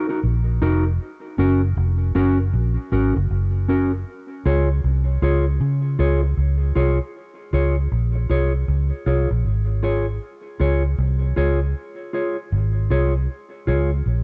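Soft digital ambience and a touch of reverb surround this laid-back, uplifting roots reggae excerpt, whose top end is gently rolled off. A mellow, clean electric guitar sits up front in a swung sixteenth-note groove, its fingered playing trailing dub echo as the harmony moves from Ebm to Gb and settles on Db at 4.1 seconds. Just as close, a round, foam-muted vintage electric bass adds a dark, amped low end from 0.2 seconds, and a new passage begins at 7.1 seconds.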